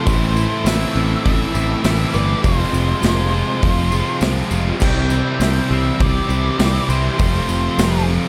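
A dark, warm small-room production sets this blissful, dreamy slice of shoegaze and dream pop rock, cut from a longer piece and lasting about 8.3 seconds at a straight 101 BPM in 4/4. A dark octave-fuzz lead guitar carries the melody through distortion and analog delay, while a very quiet picked twelve-string acoustic adds shimmering, octave-doubled arpeggios complete with finger squeak. Behind them sit three overdriven guitar riffs: a biting one coated in lush chorus, a double-tracked cranked stack, and a crunchy part trailed by reverse reverb. Up front, a growly, direct electric bass anchors the low end, joined by a big acoustic rock kit with a boomy kick, medium-tuned snare, bright cymbals, and a jingly, close, dry tambourine in the background. The harmony moves from Amadd9 through Fm and C before landing on Fadd9 at 7.2 seconds.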